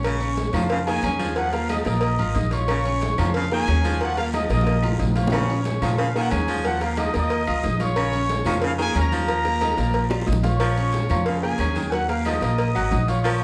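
A wet, live-in-one-room sound carries this danceable, passionate salsa excerpt in Bb minor at 182 BPM, where a mellow, tight trumpet section leads the melody over a thumpy, woody pizzicato upright bass up front, an edgy, forceful baritone saxophone second line from 0.1 s, a clear, intimate grand piano with long sustain from 0.2 s, and background congas, round bongos with cowbell, ringing agogo bells and timbales, raspy guiro and very quiet claves, with drum fills at 4.5 and 9.6 seconds.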